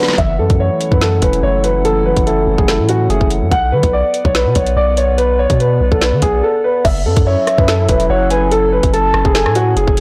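Tense and dark, this half-time drill excerpt sets a boxy grand piano melody, treated with low-pass filtering and tape echo, over a warbling lo-fi pad, a phased tine electric piano that drops out at 3.5 seconds, deep sine 808 bass from 0.2 seconds, and an up-front drill kit with a hard-clipped kick and metallic hats, while a round, octave-layered synth lead with chorus enters at 7.3 seconds in a blown-out, overdriven mix.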